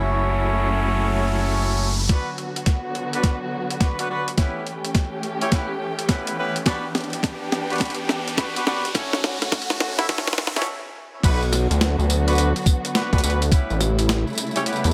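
Playful and swaggering, this glitch hop excerpt rides a swung 105 BPM groove, with dark, lush bowed strings holding sustained chords and a bright pop-style horn section firing delayed stabs, both pumping under sidechain, while an electronic riser climbs until 10.7 s. A gritty, sampler-style boom bap kit with a high-tuned snare, crash, hi-hat and tambourine joins a pitched-down, thumpy electronic kick at 2.1 s for a build-up with a drum fill and filter sweep, then a brief stop comes before the drop. At 11.2 s the aggressive, tube-saturated sawtooth synth bass returns up front over chords moving from Bm to A7, all set in light digital ambience.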